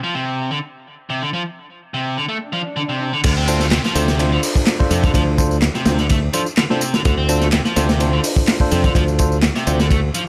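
A biting, overdriven guitar riff with dub echo opens this funky, gritty breakbeat cut at 126 BPM in D minor, and a background swell and downlifter enters at 2.5 seconds. At 3.2 seconds the drop brings in a crunchy, saturated breakbeat kit with a punchy kick and dark cymbals, growly fingered electric bass, and overdriven electronic tambourine and handclaps, with clean tine electric piano stabs carrying their own dub echo soon after. The recording is dry, the 16ths are lightly swung, and the harmony shifts from D7(no3) to Dm7.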